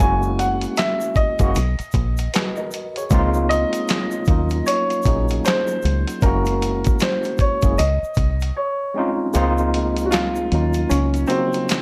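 A woody upright piano carries the melody over a worn, slightly out-of-tune tine electric piano with light overdrive, a dark, round fingered electric bass and a gritty, sampler-style drum kit of thumpy kick, snare, hi-hat and handclaps, all up front and with both pianos low-pass filtered, in this nostalgic, cosy lo-fi hip hop passage in Db major at 77 BPM with a swung 16th feel. A grainy egg shaker sits in the background under light reverb as the chords move from Gb7 through Cb and Dbmaj13 to Ebm9. A short break arrives at 8.6 seconds, and from 9.3 seconds the kick drops out, with the bass stopping at 11.2 seconds before the clip is cut off.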